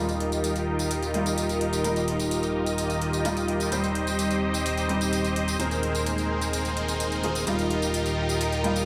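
Euphoric and triumphant, this festival progressive house excerpt in Eb major moves at 128 BPM in straight 4/4, cycling through Ebadd9, Cm/Eb and Abadd9/Eb chords under a moderate, lush hall reverb. A huge, detuned supersaw riff sits up front with a low-pass filter sweep running through the whole passage and a digital delay, while a soft, felt-muted upright piano with its own delay and a chorused, phased unison pad with slow attack fill in the chords behind it. A fat, saturated analog bass holds Eb1 underneath, and electronic hi-hat and tambourine with metallic hats enter at 0.1 seconds.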